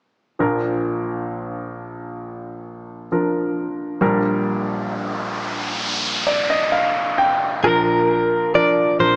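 A slow, straight 4/4 pulse at 66 BPM carries this short, emotional pop excerpt in Bb major, cut from a longer piece. A clear, up-front grand piano opens at 0.4 seconds, its smooth, short-sustained chords moving from Bb to Gm/Bb and spanning a broad range from deep bass notes to bright upper tones, with a piano fill arriving at 5.8 seconds. An electronic noise sweep enters the texture at 4.5 seconds and runs until 7.6 seconds, marking the change into the next section. There a clean, direct-recorded electric guitar takes the melody, picked and compressed with a harmonic tremolo, while a dark, round, foam-muted fingered bass sits low and punchy on Bb beneath it. A lush hall reverb surrounds the heartfelt mood, and the small-speaker sound gives the whole a slightly boxed character.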